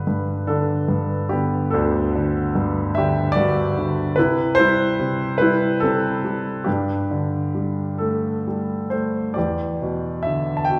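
In a slow, rubato 6/8 around 44-50 BPM counted in dotted quarters, this peaceful, calm classical excerpt features a lyrical solo grand piano in G major, its warm tone sitting up front and spanning from D2 to A5. The harmony moves from Gadd9 to C at 4.2 seconds and Gsus2 at 6.7 seconds before a new section opens on Em7 at 9.4 seconds, just ahead of the cut at 10.8 seconds. A wet reverb, recorded in a church or concert hall, surrounds the piano with a 1.9-second tail.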